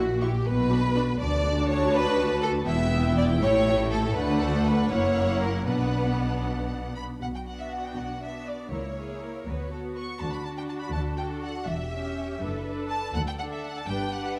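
In a brisk, straight 6/8, this graceful and cheerful classical-period movement for string orchestra, cut from a longer piece, moves through a change of section at 7.2 seconds. A rich first violin section carries the bowed melody high with a smooth, vibrato-laden top, while an up-front second violin section adds a clear second line and a distant viola section supplies the accompaniment. Warm cellos and a focused double bass section share the bass, set in a dark production with a wet scoring-stage reverb.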